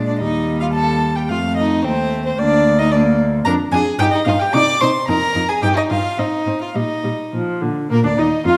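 An up-front first violin carries the melody with a nasal, reedy gut-string tone and airy bow, leading a spirited, lively classical-period string quartet movement at 110 BPM in 2/4, played with rubato and tuned to A4 = 441 Hz. Beneath it, the second violin adds a rich second line, the viola a smooth-topped accompaniment and the dark cello an up-front bass, all in period style, as the music moves from Bb major to Eb major at 3.5 s. A wet recital-hall reverb and a dusky, mellow production frame this brief fragment of a longer piece, which closes on an open Eb fifth at 7.9 s.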